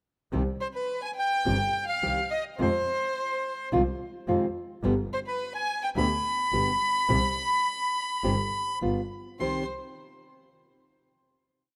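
This rough home demo sits in a lush hall reverb of moderate depth, giving a short, complete tango piece a roomy glow. The feel is rubato and the mood passionate and dramatic, with the harmony moving from Cm through Fm7 and G to a closing Cm chord that rings from 9.4 seconds. A full-bodied nylon-string guitar, fingerpicked and up front, supplies short tango chords in a deep classical voice. A focused, bowed double bass marks the tango rhythm in two with vibrato. The reedy, bright bandoneon carries the melody from 0.6 seconds in motif-based, sentence-like phrases, while a warm violin, bowed with soft attack, portamento and expressive vibrato, doubles it in unison as a second line.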